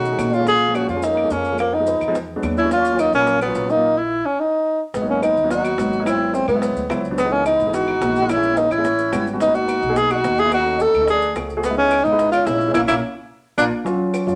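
Moderate studio reverb surrounds this sophisticated, sultry excerpt of Afro-Cuban jazz, where a breathy, whispered tenor saxophone with vibrato carries the melody up front and close, while a distant, roomy trombone with a plunger mute adds a wah-wah second line in the background. A warm grand piano with short sustain supplies accompaniment over a woody pizzicato upright bass, and tight, high-tuned bongos, saturated claves and grainy maracas sit quietly beneath. The band halts for a stop at 3.8 seconds and lands on a shared accent from 12.7 seconds.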